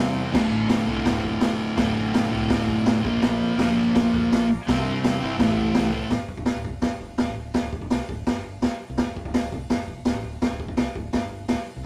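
Swaggering and menacing, this short cut from a longer garage rock piece charges along at 167 BPM in a straight 4/4, centred on D minor. A dark, double-tracked fuzz guitar sits up front with a compressed, distorted riff through the opening 6.1 seconds, moving over Dm, Bb, C and Am, while a vintage combo organ, buzzy and overdriven with heavy vibrato, holds sustained chords in the background. The raw garage drum kit enters at 0.3 seconds with a boomy kick, a high-tuned snare, hi-hat and crash, its gritty, saturated sound mid-forward and rolled off at the top. A bright, direct fingered electric bass runs beneath until 11.8 seconds, carrying the second half with the drums once guitar and organ drop out and the chords fall away. The whole thing has the rough feel of a small rehearsal room with only a light touch of reverb.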